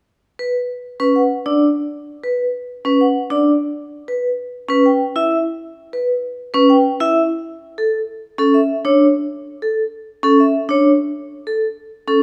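Hypnotic and meditative, this classical minimalist pattern piece in 6/4 sets two vibraphones played with medium hard mallets up front in a wet recital hall reverb. One vibraphone carries the melody from 0.4 seconds with a metallic ring and fast motor vibrato, while the second joins at 1.0 seconds with lower arpeggios, its metallic tone ringing under a medium motor vibrato. The harmony moves from Bmadd9 through C#m7 and a rootless E7sus4 to A before this cut from a longer piece ends at 12.2 seconds.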